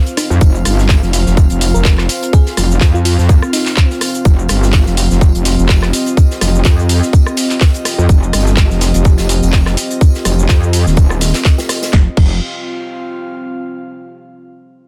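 Bass house at 125 BPM with a 16th-note swing, bouncy and aggressive, led by an up-front metallic wobble bass that is distorted and overdriven with chorus and sidechain pumping, under a tight electronic kick and a layered garage kit of cracking snare, handclaps, cabasa, rim click, crash and warm hats. In the background, an unplugged kit adds hi-hat, snare and tambourine played with bundle sticks, while a deep, moody ambient pad holds sustained chords and an airy, breathy pad adds texture, both pumping with the sidechain. A sparkling, bell-like FM electric piano with phaser and tape echo plays a short melody only from 0.2 to 3.9 seconds, and the breathy pad carries on alone after the other parts stop near 12.4 seconds, all within a dense, heavily limited digital ambience.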